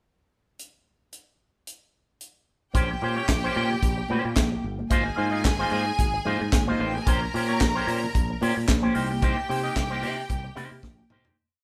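A four-on-the-floor disco beat at 111 BPM with swung sixteenths drives this glamorous Bb dorian piece, the tight, up-front funk kit opening with a pickup bar of clap-layered snare and open off-beat hats before a growly octave bass with slides, a twangy envelope-filtered guitar chopping sixteenths and a lush bowed string section running into held notes join at 2.7 seconds, with faint ringing congas just after, for a breakdown over Bbm69, Ab69 and Cm7 that fades out from 9.2 seconds into a closing drum fill.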